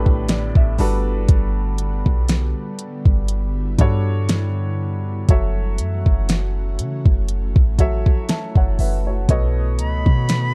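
A slow 60 BPM pulse in 4/4 carries a gentle 16th-note swing, with a smooth, electronic R&B drum kit arriving at 0.1 seconds and sitting up front: a soft kick, a fat snare and silky hi-hats. This moody, sensual contemporary R&B fragment, cut from a longer piece, rests on a clean 808-style bass that is deep and boomy, a round sine tone with a fast attack that decays into mellow lows. A worn baby grand piano opens with a fill in the first 1.3 seconds and keeps accompanying throughout, its notes ringing with long sustain over chords moving from A9sus4 to Gmaj7, F#m7 and B7. Behind it an ethereal, airy pad of detuned sawtooth and triangle voices in unison swells in slowly and holds its chords, thickened by ensemble chorus, its own reverb and a sidechain pumping motion. A breathy, bright silver concert flute touches a single high note at the very start and returns at 9.8 seconds, close-miked with an unsteady vibrato and a soft attack, trailed by tape echo. 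The overall production is dark and warm with little room sound.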